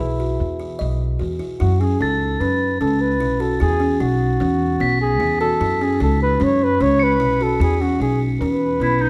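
A breathy, mellow flugelhorn carries the jazz-tinged melody up front in this playful, hopeful excerpt of contemporary chamber music, moving in a straight 5/4 at 150 BPM in E major over chords of Emaj7(no3) and F#m7. A buzzing, woody kalimba rings out thumb-plucked arpeggios, pizzicato upright bass anchors the low end, and shimmering, bell-like crotales add soft high texture from 2.0 to 7.8 seconds. A clear, classical-style clarinet enters at 8.8 seconds with a brief second line, all set in a moderate recital-hall reverb with a dark production.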